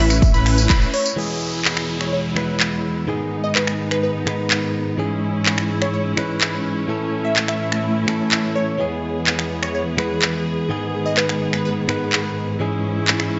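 This festival progressive house excerpt opens in an anthemic, euphoric rush, with a brief drop in the first 1.2 seconds. A huge, detuned supersaw riff with phaser and delay, a fat, saturated analog bass and a grainy, 12-bit unison pluck arpeggio hit together, with a punchy electronic kick landing at 0.2 seconds. The synths pump against the sidechain, and a band accent arrives at 0.7 seconds before they cut away. A catchy, full-bodied unison lead carries the melody with lush chorus and delay, while a bright, intense studio string section sustains bowed chords beneath it, breathing with the same pumping. From 1.2 seconds a clean, twangy direct-recorded electric guitar joins as accompaniment with vibrato and delay, and an electronic downlifter sweeps by in the background. A tape-warm house kit of finger snaps, handclaps, metallic hi-hats and tambourine drives the groove up front in a lightly reverberant, soft-topped mix, as the chords cycle through A, E, G#m and C#m/G#.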